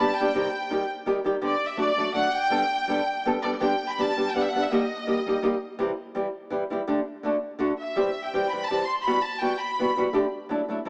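Festive and romantic, this short cut from a longer mariachi-style Mexican folk piece moves at 166 BPM in a lilting 3/4 with a light swing, centered in G major. A bright, biting violin section carries the melody high in its range with light vibrato and an intense bowed sound, sitting up front yet with a distant, studio-ensemble quality and a slapback echo trailing its lines. The violins drop out at 5.4 seconds and return at 7.8 seconds, while a fingerpicked flamenco guitar plays accompaniment from start to finish, its acoustic tone warm and close, with audible finger squeak. The harmony wanders colorfully, passing through chords such as Cm, Eb, Am7 and Emadd9 before resting on a Dsus4 near the close. A moderate plate reverb adds a long tail, and the overall sound has a small-speaker character.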